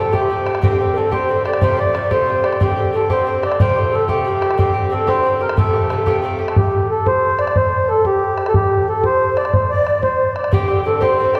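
A reedy, round accordion sits up front and carries the melody of this rollicking Celtic jig in F major, moving at 121 BPM in a lively 6/8. An airy, hollow wooden flute adds a second line in the background, while an open, boomy bodhran drives the percussion. A picked, metallic bouzouki plays Fadd9 and Csus2 chords, drops out at 6.6 seconds and returns at 10.5 seconds, all within the long, wet reverb of a church.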